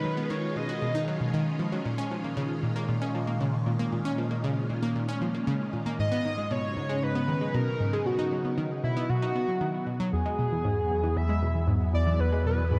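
A round, up-front analog pluck riff with chorus and tape echo drives this expansive, cosmic excerpt of ambient, sequencer-driven space music at 116 BPM, over swirling, vintage string-machine chords washed in phaser and ensemble chorus; a shimmering, nasal pulse-width lead with vibrato sounds its melody briefly at the start and returns at 6.0 seconds, and a deep sine sub bass arrives at 10.1 seconds as the harmony moves to E, the whole mix sitting in a dark, wet plate reverb.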